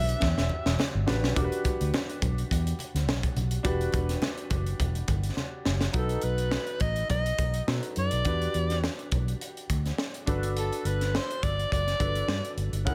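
Swung sixteenths at 104 BPM drive this urban, bittersweet slice of polished 1980s jazz-funk pop in E minor, where a punchy, gritty fusion drum kit with a high-tuned snare adds fills, a round, foam-muted fingered electric bass sits up front, a clear concert grand piano with analog chorus supplies accompaniment throughout, very quiet, bright congas play until 5.8 seconds, and a breathy, whispered soprano saxophone with vibrato and delay returns at 6.0 seconds to carry the melody over a dry mix.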